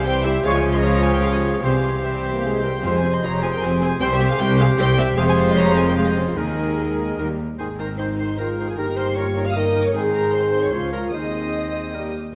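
A quick classical-period movement for symphony orchestra in 3/4 at 151 BPM, this urgent, restless passage is cut from a longer piece and settles into Ab major from 5.2 s. A studio violin section carries the melody high above the ensemble, its sul tasto tone soft-edged, pure and floating. An oboe, a clarinet, a very quiet airy flute section and a rich chamber violin section with vibrato in the background weave second lines beneath it. Dark, intimate violas and a present bassoon fill in the accompaniment, while a clear, floating cello section and a close chamber double bass section hold down the bass. A punchy French horn section enters with sustained chords at 0.4 s, and a distant, roomy trumpet section adds tight stabs until 7.3 s. The harmony moves from Db through C and Fm to an Ebsus4 resolving to Eb, then cycles around Ab and Eb, all bathed in a lingering scoring-stage reverb.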